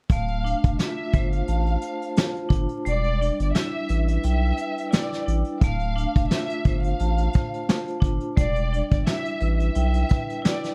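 A dark production with vinyl crackle and light reverb frames this moody boom-bap hip-hop fragment, cut from a longer piece and moving at 87 BPM in 4/4 with a gentle swing on the 16ths, in D dorian. Up front, a vintage brush drum kit recorded in a small, pumping room pairs a fat snare and tight kick with hi-hat, its top rolled off, and the kick drops out between 2.9 and 5.6 seconds. A deep, thick, saturated sub bass with a fast attack sits equally forward, holding sustained low notes until it stops at 10.0 seconds. Hard-mallet vibraphone adds a metallic, band-limited accompaniment with a fast motor vibrato and a cassette-tape tint, over chords that alternate between Dm7 and Em7. Alongside it, a distant, lush studio violin section carries the melody, its bowed, soft-attack ensemble tone warm and expressive.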